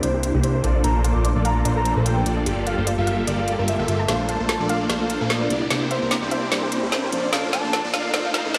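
This euphoric, playful future bass excerpt opens directly into a build-up in Bb lydian at 148 BPM, felt in half-time with a light swing on the sixteenths. Huge, bright supersaw chords carry the riff up front through a phaser and a sweeping low-pass filter, alongside a fat, detuned sawtooth bass and a trap kit with a woody snare and crisp hats. Above them, a velvety lead sings the melody with vibrato, chorus and tape echo, while an airy, breathy pad holds chords in the background and a soft, round pluck traces dark, very quiet arpeggios. A faint electronic riser enters at 1.6 seconds, and a drum fill begins at 4.1 seconds as the harmony moves through C9, Bbmaj9 and Gm9. A lush hall reverb and the sound of a big system in a bare room give the mix a spacious, roomy feel.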